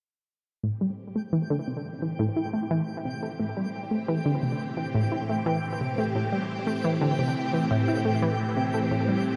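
Ambient piece at 87 BPM in A minor, hypnotic and cosmic in mood, resting on an Am7 chord through this short cut from a longer work. A swirling, vintage string machine with ensemble chorus and phaser fades in from 0.6 seconds to hold sustained chords, sounding alongside a round, detuned analog pluck riff with chorus, delay and a filter sweep, while a twinkling granular texture with its own reverb sparkles high above from 1.2 seconds. The dark production sits in a huge reverb that lingers for 8.2 seconds.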